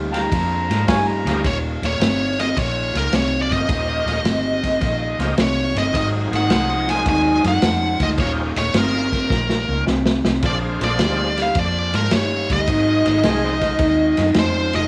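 The recording sounds lo-fi, with light small-room reverb around a rollicking, soulful electric blues shuffle at 107 BPM in Eb, cut from a longer piece. An overdriven, gritty harmonica with light vibrato, tongue slaps and scooped notes opens with a short jazz-style solo through a digital delay, stepping back at 1.4 seconds and returning briefly near the end. At 1.5 seconds a biting, up-front lead guitar takes the melody with a picked, overdriven tone, over a slightly broken-up riff guitar through a small old amp. A round, foam-muted fingered bass and a vintage kit, with punchy kick, muffled dark ride and snare, drive the swung groove, and a drum fill arrives at 9.3 seconds. A bright, shouting tonewheel organ with key click, chorus vibrato and slow rotary speaker fills in the chords as the harmony moves through Eb7, Ab7 and Bb7.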